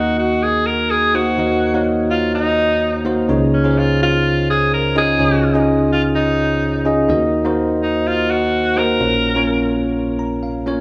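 A straight 4/4 pulse at 126 BPM drives this dramatic, moody pop excerpt, cut from a longer piece. A bright, vintage-toned tenor saxophone carries the solo melody up front, singing with vibrato and scooped notes between Db4 and Bb4, its line trailed by tape echo until it stops at 9.7 s. Beneath it, a bell-like tine electric piano supplies clean, direct accompaniment across a broad span from Bb1 to Bb5, sitting slightly louder than the horn and closing with a short fill from 10.0 s. The harmony moves from Ebm to Dbadd9, returns to Ebm and lands on Bbm, giving the passage a brooding, unresolved cast. A lush hall reverb with a long tail surrounds the whole, lending the studio sound a spacious sheen.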